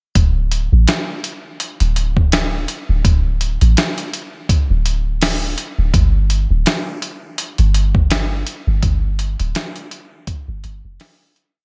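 A gritty, compressed sampler-style drum kit with a thumpy kick and medium-tuned snare drives this short, hypnotic and cinematic trip hop piece at 83 BPM in D minor, its looped, edited breakbeat swung on the 16ths and re-recorded in a large room. Entering together with it, a deep, round 808-style bass with tube saturation plays a syncopated riff up front. The bright 1980s-style digital production keeps reverb minimal, and the groove fades out from 7.9 seconds, with the bass stopping at 11.0 seconds and the drums at 11.6 seconds.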